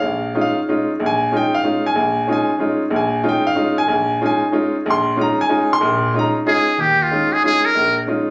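A clear, natural grand piano opens this short jazz excerpt in a swung three-time feel, laying down accompaniment on a suspended chord with a spiritual, open mood. At 6.5 seconds a trumpet with a metal mute enters up front for a brief solo melody, its tone brilliant yet thin and buzzy with light vibrato. Captured on a phone in a club, the sound carries moderate room reverb and compression.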